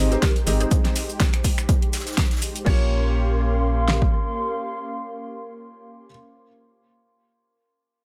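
Set in a studio ambience, this deep, warm deep house fragment at 123 BPM in Bb dorian moves from Abmaj7 to Bbm69 as a smooth, detuned analog pad and a warbling, lo-fi tape-like pad with built-in reverb pump under sidechain, a soft felt-muted upright piano with audible action noise plays dub-echoed stabs, a hollow organ-like FM bass sits up front until 4.1 s, a woody mallet-like synth pluck with phaser and chorus carries a background melody, and an overdriven deep house kit with punchy kick and fat snare joins a second overdriven kit of crash, finger snaps, metallic hats, shaker and snare plus a dry, rolled-off 70s kit of hi-hat, shaker and snare, the two lighter kits stopping near 2.8 s.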